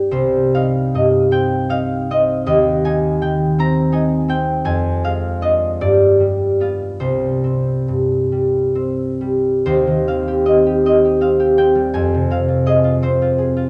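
A concert harp, fingerpicked, ringing and up front, plays alone through this wistful, mysterious classical excerpt in a rubato 6/8, moving from C minor through a diminished chord and G7 before a new section at 9.7 s turns toward F minor, all set in a dark production with a moderate recital hall reverb.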